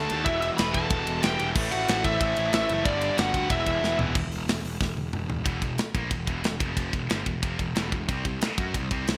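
A warm, distorted high-gain lead guitar carries the melody with delay over a darker second lead line in this epic, dark heavy metal passage at 184 BPM in E minor, cut from a longer piece, backed by faint earthy bowed chamber strings with light vibrato, two picked high-gain rhythm guitars, a double-tracked raw garage guitar, a growly fuzz-overdriven bass and a tight, up-front drum kit with gated reverb that plays fills; the leads stop at 4.0 s and the strings, garage guitar and second heavy guitar fall away by 4.2 s, leaving one heavy guitar, bass and drums to push through E5, F5 and C5 power chords until 9.2 s in a bright 1980s-style digital mix with plate reverb.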